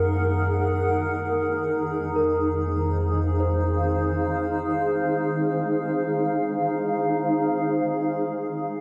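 A blurred, cloudy granular pad and a dark, rumbling drone open this serene yet melancholic free-time ambient fragment in a vast, echoing cathedral space, with a delicate, bell-like celesta drifting in arpeggios through tape echo in the background from 2.2 seconds, and the ominous drone falling away at 4.6 seconds while the evolving pad sustains its chords to the end.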